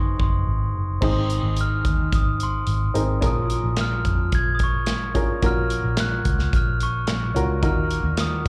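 A straight 4/4 pulse at 109 BPM drives this anthemic, hopeful piano-driven pop excerpt, with a modern studio drum kit entering at 0.2 s, its punchy kick, medium-tuned snare, hi-hat, handclaps and crash sitting up front with a rolled-off top. A woody upright piano with short sustain and a dark, round, foam-muted electric bass carry the harmony through Ab, Bbm7, Gbmaj7/Bb and Ebm, while a mellow, bell-like glockenspiel played with rubber mallets rings out the melody, with slapback echo on the glockenspiel and piano and digital delay on the glockenspiel alone. The whole performance sounds like a live gig heard through the venue's PA, wrapped in light club reverb.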